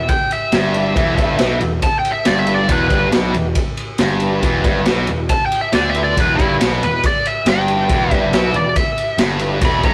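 Heavy and gritty, this blues rock power trio cut with a southern rock lean drives along in a straight 4/4, caught from a longer piece and sitting on a single E minor chord. A biting, overdriven lead guitar takes a solo from the very start, riding up front alongside a tight, double-tracked distorted rhythm guitar that plays a low riff. Underneath, a fuzz-toned picked electric bass adds a round, overdriven bottom. The raw garage drum kit comes in at 0.1 seconds with a punchy kick, medium-tuned snare and ride cymbal, its saturated sound pumping in a small room with a rolled-off top. From 0.7 seconds a tonewheel organ holds sustained chords in the background, lightly overdriven through a slow rotary speaker and chorus vibrato. The whole take has the rough, saturated feel of a rehearsal-room recording, with moderate stone-room reverb giving it a 1.3-second tail.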